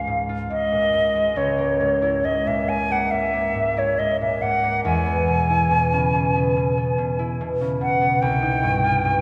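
Bathed in a wet church reverb with a 3.8-second decay, this wistful, hazy impressionist classical duo drifts at a rubato 70 BPM in 4/4, tuned to A4 = 444 Hz, as a pure, close-miked silver concert flute with a soft attack and vibrato carries the melody up front while a mellow, ringing, fingerpicked concert harp accompanies in a lower register through chords moving from Db and Dbm6 to E and finally Cm across this 9.2-second fragment cut from a longer piece.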